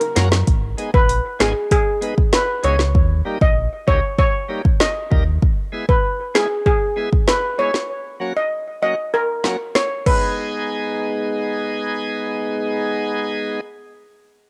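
A home cassette recording with light reverb and studio ambience carries this tough, bouncy dancehall excerpt in G# minor at 97 BPM, where a very quiet, high-tuned bongo and a drum fill open the first 0.5 seconds, a shimmering, up-front steel pan lead with analog delay rides over an electronic afro-pop kit with a deep kick, woody snare, metallic hats and finger snaps, a full sine-and-triangle sub bass with octave anchors the G#m and D# changes until 5.4 seconds, and a bright, shouting tonewheel organ with overdrive, key click and slow rotary speaker plays through to 13.6 seconds.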